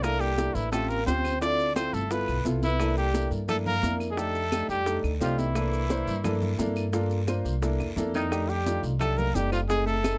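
Afro-Cuban jazz at a brisk 174 BPM in 4/4 with a straight feel, sunny and danceable, set in C mixolydian and cut from a longer piece. A breathy trumpet carries the melody up front with vibrato and a present jazz tone, while a mellow alto saxophone with scooped notes and a vintage colour traces a second line further back. A concert grand piano supplies intimate accompaniment with audible action noise, and a woody, dark upright bass played pizzicato sits up front beneath it. The percussion is layered in the background: ringing, high-tuned congas struck with hard hands, very quiet tight bongos, woody claves, a raspy guiro and grainy maracas. The harmony moves through rich dominant chords such as C13, F13 and G13, with a drum fill arriving at 7.8 seconds. The sound is close and detailed with little reverb, giving the ensemble a dry, immediate presence.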